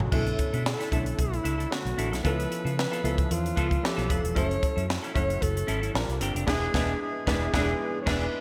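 A breathy, whispered alto saxophone carries the melody in this short excerpt of polished 1980s jazz-funk pop, its soft attack and light vibrato giving the solo an intimate, pop-styled voice over a breezy, urban groove. The tempo sits at 113 BPM in 4/4 with a gentle 16th-note swing, and the band is tuned to A4 = 436 Hz. A crisp fusion drum kit sits up front with a punchy kick, a high-tuned snare, hi-hat, toms and crash cymbal, all treated with gated reverb in an airy studio room. Beneath it, a foam-muted fingered electric bass lays down a round, dark, amped line. A natural-sounding baby grand piano with short sustain comps through an ensemble chorus, while a clean semi-hollow guitar plays a hollow-toned riff through analog chorus. The harmony moves from Bm11 through C#7alt and F#m7 to Bb69 and E7, where the band hits an accent from 6.5 seconds to the end, all framed by bright, digital-era production and light studio reverb.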